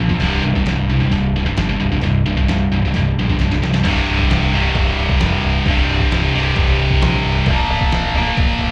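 Heavy metal at 132 BPM in a straight 4/4, this short cut from a longer piece sounds heavy and aggressive, like a live gig heard through a club PA with a touch of room reverb. A high-gain distorted guitar drives the riff up front, its double-tracked, scooped and bright tone ranging from C2 to Bb3. Beneath it, a growling picked electric bass with overdrive, both direct and amped, sits low from C1 to C2. A lo-fi sampler-style drum kit enters at 0.1 seconds, compressed, pitched down and muffled, with a thumpy kick, medium-tuned snare, hi-hat and crash cymbal carrying a tape-warm character. After a drum fill from 3.4 to 3.8 seconds, the music shifts into a new section, with the harmony moving from C5 near the start to Bbm/Db by 7.5 seconds.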